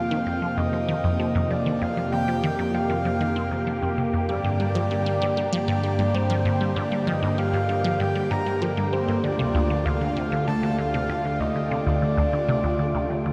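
A phased analog pad swirls through sustained, bright chords at the opening alongside a breathy, flute-like synth lead and a dark, wind-like tuned noise texture. They are joined almost at once at 0.1 seconds by a squelchy, resonant blip pluck riff with a gritty 12-bit edge and echoing delay, setting a sequencer-driven space-music groove at 97 BPM in G minor. Above them the lead sings a soft melody with vibrato and chorus, while the noise texture drifts in the background. The mood is expansive and cosmic, the whole mix soaked in a huge, dreamy reverb as the harmony moves from Fsus4 to Gm at 4.3 seconds and Dm at 9.2 seconds in this excerpt from a longer piece.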